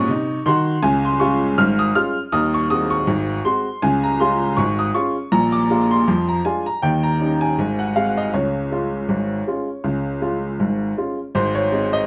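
A clear, woody upright piano opens this jaunty, playful ragtime fragment alone and up front, swinging in 2/4 at 80 BPM in Db major across a range from Ab1 to F6, its vintage tone and long sustain set in moderate studio reverb within a dark production as it moves through dominant-seventh changes back to the home chord, then cuts off at 12.1 seconds as part of a longer piece.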